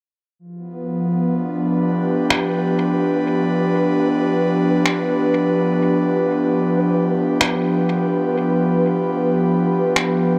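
At 94 BPM in 4/4, with a 57% swing on the sixteenths, this ambient dub passage, cut from a longer piece, rests on a single G7 chord in G mixolydian, tuned to A4 = 439 Hz. An airy, breathy pad opens at 0.4 seconds, blending triangle, sawtooth and a noise layer into soft sustained chords between F3 and B4, with slow attack, long release and chorus, sitting up front. Just after, a very quiet bubbling texture enters around B4: a resonant sawtooth whose filter steps at random, mellow and chorused, with its own built-in reverb. Electronic finger snaps arrive at 2.3 seconds, sampler-style, compressed and pitched down, also up front. Their snare and room sound are low-pass filtered and muffled, tape-tinged and re-recorded in a small room, then sent into dub echo. A moderate spring reverb of 2.5 seconds and a dark production lend the music a spacious, peaceful mood.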